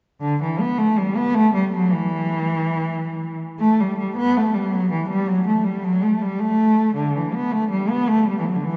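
A long church reverb, with a decay of 3.8 seconds, surrounds this short, cut-off recording from a large hall, and its top end reaches only to about 7.7 kHz. A single bowed cello carries the whole piece, set up front and sounding dark, nasal and woody as it plays solo from 0.2 to 8.8 seconds. It is a cheerful, lively Celtic folk tune in 9/8 at 107 BPM, counted in dotted quarters with a straight feel. The cellist adds vibrato and portamento to the line, which stays in a low, narrow range from D3 to B3. The instrument is tuned slightly below standard pitch, to A4 = 438 Hz, and the passage forms one continuous section.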